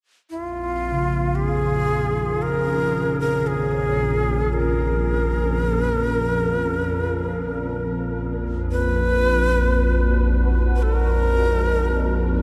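Dark and ominous, this slow dark ambient drone at 57 BPM in Bb phrygian is cut from a longer piece and steeped in a huge reverb that evokes a vast, echoing space. An up-front organ-like drone holds the low end with detuned ensemble chorus, while a resonant sawtooth pad fades in from 0.3 seconds in the background, its chords moving from Bbm to Gbsus2 at 8.7 seconds. A breathy, bright shakuhachi carries the melody up front with vibrato, chiff and tape echo, and a mellow bronze gamelan-type metallophone, struck with padded mallets, rings out soft arpeggios until 9.0 seconds.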